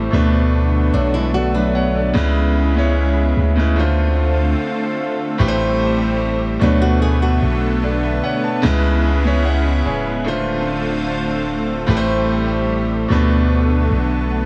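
A dreamy, reverb-soaked mix opens this moody, sensual R&B fragment at 74 BPM, where a brilliant, up-front concert grand piano and a lush, detuned sawtooth pad with chorus carry minor seventh chords over a deep, mellow 808-style sine bass, while a boxy, fingerpicked flamenco guitar with tape echo and audible finger squeak plays arpeggios from 0.9 to 8.4 seconds.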